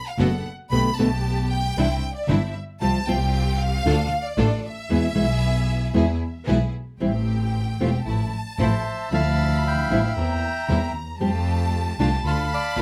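Passionate and dramatic, this rubato tango excerpt in A minor at 115 BPM sets a clear, focused bowed violin section with vibrato on the second line over fingerpicked classical nylon-string guitar, clear string-section stabs and a dark, expressive bowed double bass with portamento, until a reedy, airy bandoneon enters up front with the melody at 8.6 seconds, all captured closely and in fine detail in a dry studio.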